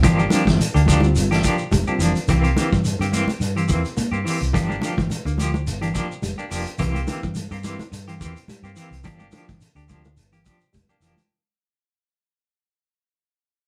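A driving, hypnotic afrobeat groove in 4/4 with a lightly swung sixteenth-note feel, this short cut from a longer piece circles between Gm7 and C7 and fades out from 0.5 seconds to the end. A vintage drum kit with a medium-tuned snare, tight kick and hi-hat sits mid-forward with a rolled-off top, while a round, dark hollow-body short-scale bass played with the fingers anchors the low end. A semi-hollow electric guitar sits in the background playing dark, clean arpeggios, and a bright, picked clean electric guitar adds stabs treated with tremolo and slapback echo. A grainy shekere, close and dry, joins high-tuned, damped congas with a thick-skinned sound that enter at 0.3 seconds and stay in the background. A reedy electric piano with fast tremolo, heard through its built-in speakers, offers brief accompaniment from 0.3 to 2.2 seconds, all captured as a band playing live in one room with moderate studio reverb.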